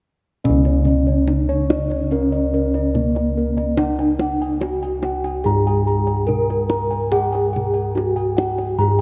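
This excerpt of Javanese gamelan, cut from a longer piece, opens at 0.4 s with a bronze metallophone melody, bossed gongs in arpeggios and a deeper gong part holding the bass, all entering together. The kendang joins at 0.5 s. The mood is shimmering and serene, moving at a steady 72 BPM in a straight 4/4 in C# pelog barang, tuned to A4 = 439 Hz. The metallophone rings mellow and soft under padded disc mallets, its paired tuning producing shimmering beats. The arpeggiating gongs sit up front with a round, dark tone, while the low gongs beneath them sound smooth and beating. The kendang stays tight and dry with hard hands, and the whole ensemble sits in a vast, echoing cathedral reverb until the kendang stops at 8.7 s and the rest ends at 9.0 s.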